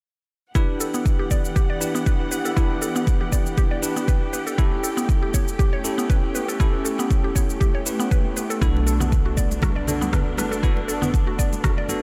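Light reverb and a digital ambience set a warm, spiritual glow over this afro house excerpt, with a deep, layered electronic kick sitting up front in a small room. Muted strings enter at 0.5 s, holding dark, veiled, con sordino chords with gentle vibrato that pump against the kick as the harmony moves from Em7 to A7 to Bm7. A round, mellow mallet-like synth pluck spins chorused, delayed arpeggios, while a bell-like tine electric piano adds clean, bright stabs through a low-pass filter, subtle chorus and delay, both also pumping with the kick. Electronic shaker and rim click keep a lightly swung pulse beneath them. At 8.6 s a woody, soft FM bass arrives with a fast attack that then decays, and from 8.8 s ringing acoustic congas join quietly in the background, deepening the groove as the passage closes.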